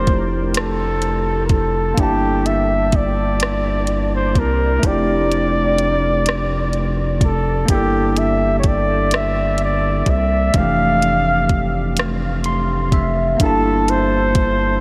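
A slow, sultry R&B piece in 6/8 at 42 BPM opens with flugelhorn, overdriven electric piano and rubbery square bass together, and the drums join at 0.1 s. The flugelhorn carries the melody up front in G dorian, its warm, jazz-style tone smooth at the top, touched with light vibrato and trailed by delay. Beneath it, the tine electric piano plays a barky, gritty accompaniment through a combo amp with phaser, moving between Fmaj13 and Gm69, and adds a fill at 12.0 s. The bass sits up front, hollow and bouncy with a fast-attack filter pluck, while the electronic kit supplies a soft kick, hi-hat and rim click in a polished, late-night groove. A huge ambient reverb soaks the mix in a dreamy haze, and the passage is cut from a longer piece.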